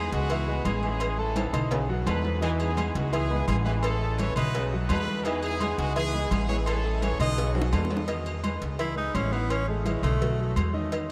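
A brilliant, punchy horn section carries the melody through 7.9 seconds of this festive, sunny salsa excerpt at 170 BPM in E major, with a tight trombone section as a background second line, a clear, polished baby grand piano, a woody, thumpy upright bass up front, soft-handed congas, high-tuned cowbell and bongos, and ringing agogo bells and timbales, before a breathy tenor saxophone with vibrato takes a solo from 8.8 seconds, all bathed in a dreamy, huge ambient reverb.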